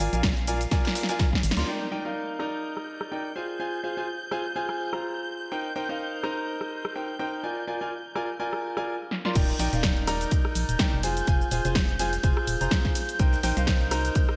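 Piano house cut from a longer piece, joyful and euphoric: a clear, up-front grand piano riff with delay and a low-pass filter sits in front of veiled, muted chamber strings holding sustained chords, while a dry analog drum machine keeps time throughout, and a hollow, organ-like FM bass, a gritty, very quiet sampler-style soul kit and a punchy, tape-warm electronic kick appear briefly at the opening before returning for the drop at 9.4 s, the whole mix sitting in a lush hall reverb with bright 1980s-style digital production.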